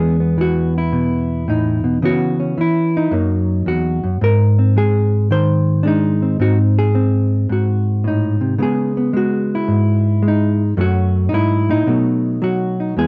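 Solo jazz at 110 BPM in 4/4 with a swung eighth-note feel, relaxed and unhurried, taken from a longer piece. A lone hollow-body electric guitar, clean and fingered with a dark tone, sits up front in a moderate club reverb, spanning E2 to B#4 as it moves from Emaj7 through C#m7, F#7, G# and G#7, then back to C#m7 and on to F#m7 and B7. The production is dark and warm, giving the 13.1-second passage a warm, relaxed character.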